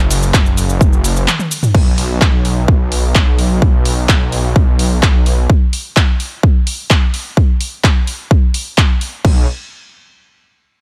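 A punchy, overdriven electronic kick anchors this euphoric, triumphant festival progressive house clip cut from a longer piece, arriving just after a layered big-room kit of crash, handclaps, hi-hat, shaker and toms that fills at 1.3 s. A thick, lush detuned saw bass with chorus and sidechain pumping drives the opening drop, drops out at 5.5 s and briefly returns at 9.2 s, all in a dark, dry production.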